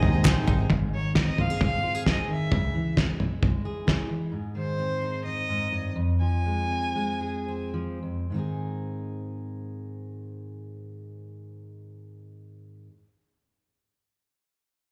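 A straight 4/4 pulse at 105-133 BPM, easing into a slowdown through the middle, drives this uplifting indie folk passage in Ab major, heard as a live gig through a club PA, where a muffled, fat-snared drum kit up front and a round, foam-muted fingered electric bass fall away within about 4 seconds, a shimmering picked twelve-string acoustic guitar, a breathing pedal harmonium and a very quiet woody mandolin sound only in the opening moment, a smooth bowed fiddle with light vibrato and slapback echo carries the melody until 7.7 seconds, and a full-bodied fingerpicked steel-string acoustic guitar, also echoed, enters at 0.7 seconds to hold the accompaniment through to 12.9 seconds.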